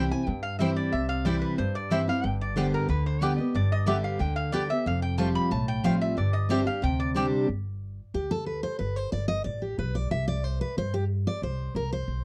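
A brisk, straight 4/4 pulse at 183 BPM drives this joyful, virtuosic bluegrass excerpt in G mixolydian, anchored by a pizzicato upright bass with a woody tone. Over the opening chords of C, G and Fadd9, a lap resonator guitar played with a steel bar and fingerpicks takes a metallic, nasal slide solo, while the mandolin adds picked stabs on its double strings. The resonator guitar drops out at 7.1 seconds and the mandolin soon after, and from 7.5 seconds the picked steel-string acoustic guitar steps forward for its own solo over G and C5. That dreadnought guitar sits up front throughout with a dark, full-bodied sound, carrying the accompaniment before it takes the lead. The dry, close studio sound has a 1970s character, with only a light touch of reverb.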